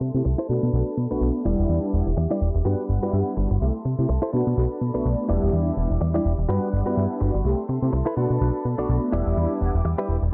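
Opening together with a punchy, up-front analog bass, a twangy clean guitar riff, round detuned synth brass with chorus, phaser and cassette-tape color, and a woody violin section in sustained chords carrying vintage 12-bit sampler grit, this sunny, feel-good house excerpt swings lightly in 4/4 through a looping Bm7–Em7–Gmaj7–C6 progression under a filter sweep that runs the full 10.3 seconds, all set in a dark production with light reverb.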